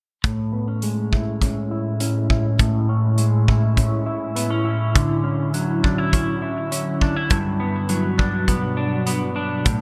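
Ethereal and floating, this dream pop excerpt moves at 102 BPM in A major, with a loose indie drum kit of punchy kick and hi-hat and an up-front electric guitar at the edge of break-up, dark and slightly broken-up, playing fingered arpeggios through analog chorus and delay from 0.2 seconds. An airy, detuned pad with a slow attack and mellow ensemble chorus joins at 1.3 seconds, holding sustained chords as the harmony moves from Amaj7 to Dmaj9 at 5.0 seconds and Gmaj7 at 7.3 seconds. A filter sweep runs throughout, and the bright 1980s-style digital production sits in a moderate plate reverb with small room ambience.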